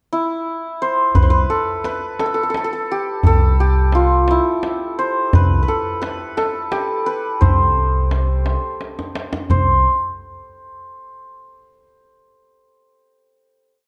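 A steady 6/8 pulse at 58 dotted-quarter beats per minute sets a festive yet stately tone for this short Persian modal ensemble piece in C dastgah mahur, tuned to A4 = 442 Hz. The santur opens alone with a brief pickup, its bright, shimmering hammered strings ringing out a modal melody with ornaments between E4 and C5, placed up front in the mix. At 1.1 seconds the upright bass and tombak join: the bass, played pizzicato on steel strings with a woody, growly tone, sits up front holding C2 on the low drum strokes, while the tombak, played with soft hands, lays down a deep pattern of low and high strokes with a live-room feel. A drum fill from 8.8 to 9.5 seconds leads into a final note that rings until the close. Light reverb lends a gentle sense of space to this complete little piece.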